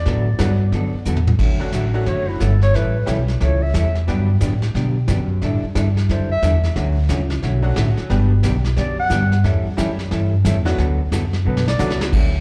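Western swing country with a cheerful, down-home swing, heard as a live club gig through the venue's PA with light room reverb. A clean, slide-played lap steel opens the melody for the first second, then a drum fill at 1.1 s hands the spotlight to a breathy, vibrato-laced clarinet solo delivered in short jazz-style phrases. Underneath, a woody, thumpy upright bass sits up front alongside a dark hollow-body jazz guitar, a brushed vintage kit with a punchy kick, and a jangly tack piano with slapback echo.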